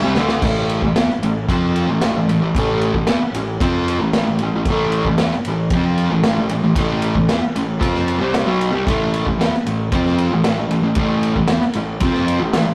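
Garage rock with a gritty, swaggering mood, this short cut from a longer piece moves at 114 BPM in a straight 4/4 and sits in A minor, resting on an A minor chord from 0.4 seconds onward. A distorted, double-tracked fuzz guitar carries the riff up front from the very start, ranging from A2 to F4. Beneath it, a picked electric bass with overdriven, punchy fuzz holds down the low end in the background between A1 and F2. The vintage acoustic drum kit arrives at 0.2 seconds with a fill, then settles into kick, medium-tuned snare, ride and crash, its dark cymbals, tight kick and rolled-off top giving it a smooth, up-front presence. The whole take has the rough feel of a rehearsal-room recording, with light reverb and tube saturation adding grain to the sound.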